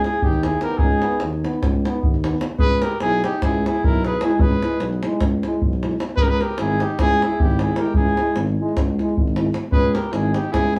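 Heard from a little way back in a small, reverberant studio room, this restless, fiery Balkan brass band piece drives along in 9/8 at 302 BPM in C# dorian sharp4, moving from G#m to E to C#m. A warm cornet carries the melody up front with plate reverb, over a clear alto saxophone second line with light vibrato, a mellow, distant tuba bass and a deep acoustic davul. A present trombone and a dark, smooth-topped euphonium join as accompaniment at 0.6 s and drop out at 9.5 s, before the excerpt is cut off.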